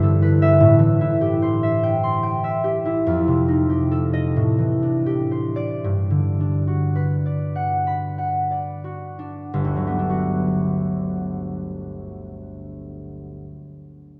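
Dreamy and graceful, this classical fragment for solo concert harp drifts in a rubato 6/8, its fingerpicked, ringing strings sitting up front across a range from G1 to C6. The harp moves through G6/9, Am7, F9 and Gmaj7 harmonies, slowing down from 1.8 to 9.5 seconds before a new passage begins. A long, wet cathedral reverb and a dark, warm production surround the instrument, and the clip is cut from a longer piece.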